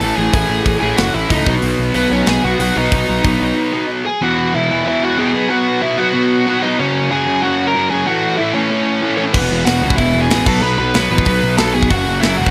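This is an upbeat, rebellious punk rock clip in a straight four, cut from a longer piece and opening in half time before a brief break pushes into the main section. A dark, double-tracked overdriven electric guitar sits up front with a low picked riff, while a bluesy lead guitar, warm and distorted, carries the melody in a higher register above it. A round, punchy fuzz bass and a tight metal drum kit with bright cymbals, a medium-tuned snare, hi-hat and crash drive the opening. The drums drop out at 3.3 seconds and the bass at 3.5 seconds, leaving the two guitars alone over harmony that moves through E, B, F# and A. Bass and drums return together at 9.3 seconds for the closing stretch, and a light reverb gives the studio room a touch of space.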